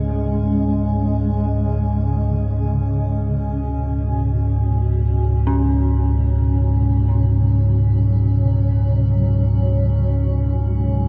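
Drifting in free time, this excerpt from a longer dark ambient drone feels vast and ominous across its 11.1 seconds. A deep, rumbling drone sits up front in the low register, its detuned, wave-folded tone swelling in slowly and sustaining throughout with its own built-in reverb. Above it, a granular cloud pad holds sustained chords in a blurred, evolving haze, mellow and softened by built-in and shimmer reverb. Further back, an eerie, inharmonic synth bell traces arpeggios with quick, decaying strikes, thickened by chorus and trailed by diffuse ambient delay and shimmer reverb. The harmony moves from C#5 to Bsus2 at 2.8 seconds, all set within a wet, cathedral-like space whose long tail lets the sounds hang and merge.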